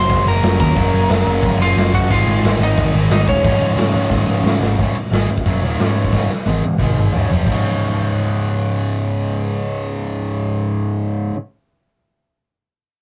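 Rough and warm, this rehearsal-room recording has a booth-sized ambience and a saturated grit across the mix, capturing an energetic, upbeat punk rock cut from a longer piece at a straight 179 BPM in Db major. A dark, slightly broken-up lead guitar carries the melody at the start, joined by a double-tracked, overdriven rhythm guitar playing a low riff and a fuzzy second guitar tucked in the background, both of those fuzz and lead parts dropping out by 4.8 seconds. Underneath, a growling, overdriven picked bass holds the bottom through nearly the whole clip, while an up-front garage drum kit with a punchy kick, medium-tuned snare, hi-hat, crash and toms pumps in a bright stone room, its top end rolled off. Drum fills mark the turns into new sections, and the kit stops at 7.5 seconds, leaving the bright rhythm guitar and bass to drive the final stretch over a Db power chord.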